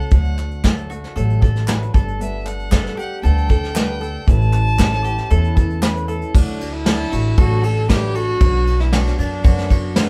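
Hopeful and anthemic, this indie folk excerpt moves at 116 BPM in D major, tuned to A4 = 435 Hz, with a bowed fiddle carrying a nasal, boxy melody with light vibrato over picked acoustic guitar and double-string mandolin arpeggios. A woody pizzicato upright bass and a punchy, roomy brush kit sit up front, while hollow group handclaps tap in the background from 0.4 to 5.9 s and a warm upright piano with long sustain joins at 2.2 s. The live band shares one small room, and the chords move from D through Gadd9 and Aadd9 before returning to D and settling on Bm.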